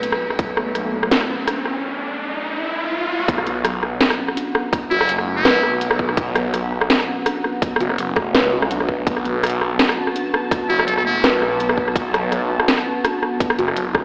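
A kalimba's soft, woody arpeggios with dub echo open this spacious, tense half-time drum and bass excerpt at 166 BPM, joined by a swirling phased saw bass, overdriven drums with a cracking snare and bright hats, a moody analog pad with chorus and sidechain pumping in the background, a very quiet pulsing gated texture, and an up-front riser that builds until the drop at 3.3 seconds, where a tight electronic kick and the bass return beneath the pad. A buzzy trumpet with a metal mute and dub echo plays brief solo phrases with light vibrato and scooped notes around 4.9 seconds and again near the end, all set in a huge ambient reverb with an AM radio character.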